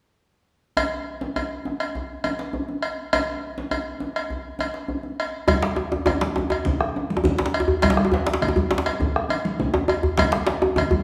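West African traditional drum ensemble music, festive and driving in a straight 4/4, cut from a longer piece. A metallic cowbell sits up front beside a deep, compressed and saturated djembe played with soft hands from 0.8 seconds. At 5.5 seconds a round bombo enters in the background, along with thick-skinned, vintage, band-limited congas and a second, medium-tuned djembe that is close, dry and up front, all set in a reverberant recital-hall space.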